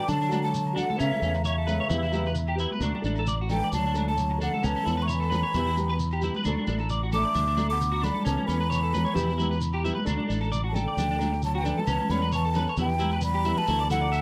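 A breathy, mellow silver concert flute carries the melody in this warm, danceable highlife guitar band groove, its straight, tongued tone close-miked and slightly unsteady, with a tape echo trailing behind. Underneath, a fingered electric bass sits up front with a round, punchy sound, while a distant, roomy bass clarinet plays a classical-style second line in the background. An electric guitar at the edge of break-up plays compressed, picked arpeggios through an ensemble chorus. From 0.3 seconds, a fingerpicked steel-string acoustic guitar adds accompaniment with a dark, woody, boxy parlour character and old strings. Bright, high-tuned congas, a grainy shekere and ringing agogo bells fill out the percussion, with the congas and bells in the background. At 133 BPM in 4/4 with a light sixteenth-note swing, the music cycles through D major chords built on D, Aadd9 and Em, captured in a dry, close 1970s-style studio sound and cut from a longer piece.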